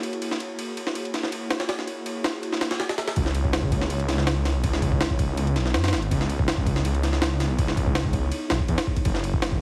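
Heavily compressed with a radio-like squeeze, vinyl crackle and light reverb, this short cut from a longer drum and bass and jungle track feels frenetic yet atmospheric. From the start, an ethereal, airy pad of detuned saw and triangle voices sits in the background with ensemble chorus and its own reverb, holding mellow sustained chords that move from F#7 to C#m7 and back to F#7 near the end. Alongside it, a gritty, pitched-up sampler-style jungle kit sits up front, with a thumpy kick, a high-tuned snare and ride cymbal, all overdriven and compressed, with filtering and studio reverb. At 3.2 seconds the drop arrives as a detuned saw bass enters up front, thick, beating and menacing, with a fast attack and sustained low notes. The bass, pad and drums then carry the drop together until the cut ends.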